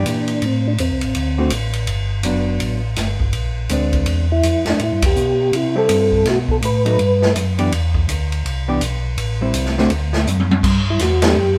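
A soft, flute-like tonewheel organ carries the melody in this bluesy, soulful soul jazz organ trio fragment, its clean tone marked by a percussive second-harmonic click and shimmering with chorus vibrato through a slowly turning rotary speaker. The melody comes in short phrases in the middle register, returning briefly near 10.9 seconds. Underneath, a second organ plays the bass line with a round, dark, mellow voice, sitting up front and given the same chorus vibrato and slow rotary treatment. A clean, fingered hollow-body electric guitar fills in the accompaniment, and a distant, roomy acoustic kit with a boomy kick and a rolled-off top swings at 165 BPM in 4/4, with the band hitting an accent at 5.0 seconds and the drums playing a fill at 10.3 seconds. The changes move through Am, D7 and Gmaj7 with bluesy detours, and the group sounds like it is playing live together in a stone room with a moderate reverb.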